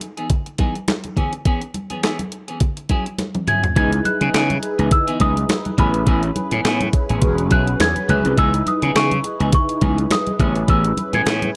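Gritty slap bass sits up front from 3.8 seconds, growly and punchy with overdrive, driving this late-night, funky slice of early-eighties boogie funk at 104 BPM in C# minor, with a light 16th-note swing. From the start, a clean 12-bit drum machine with a thumpy kick, medium-tuned snare, handclaps, hi-hat and toms sits up front with its own overdrive, while a twangy, picked clean electric guitar riff shimmers through lush chorus and hard-handed congas sit in the background. A drum fill at 3.2 seconds leads into the fuller second half, where a worn celesta carries the melody from 3.5 seconds, bell-like and slightly out of tune, trailed by tape echo. Mellow synth brass, round and detuned with a filter sweep, vibrato, chorus and phaser, adds soft sustained chords beneath it. The harmony moves from Emaj7, E6 and E69 to C#m9 and Amaj9, all set in a digital ambience, and the excerpt is cut from a longer piece.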